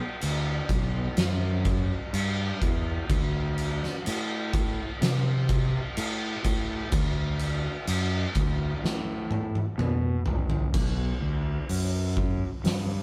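Recorded live in one room with light reverb, this brooding, hypnotic stoner and doom metal passage moves at 63 BPM in B phrygian, pairing a growly, overdriven fingered fuzz bass up front with an oversized, low-tuned acoustic drum kit whose punchy kick, fat snare and dark cymbals sound gritty and saturated in a big, pumping room, the kit breaking into a fill from 8.8 to 10.7 seconds that leads into a new section.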